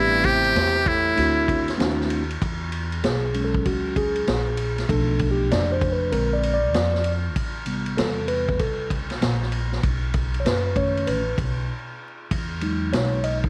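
A mellow tine electric piano carries this cool jazz-hop excerpt at 97 BPM with a swung 16th feel, stepping into a solo at 2.4 seconds over chords such as Am7, Bm7b5 and Emaj7, with a short break near 11.7 seconds. It opens with a buzzy, metal-muted trumpet melody up front and a breathy trombone line in the background, both finished by 1.8 seconds, while a woody pizzicato upright bass holds the low end throughout. A vintage drum kit with a punchy kick and dark cymbals sits up front, and vinyl crackle and light reverb round out the sound.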